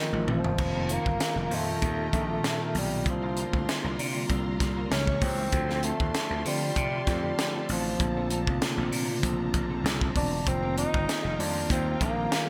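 Opening on a drum fill from the crisp, gated-reverb fusion kit, this glossy, upbeat 1980s jazz-funk pop excerpt at 97 BPM sets a mellow, roomy bassoon melody over chorused tine electric piano, growly overdriven slap bass, a very quiet, slightly broken-up picked guitar riff and lush, distant strings entering at 0.6 seconds, all bathed in bright digital production and hall reverb as the chords move from F9sus4 through C9sus4, Dm7 and Bbmaj9.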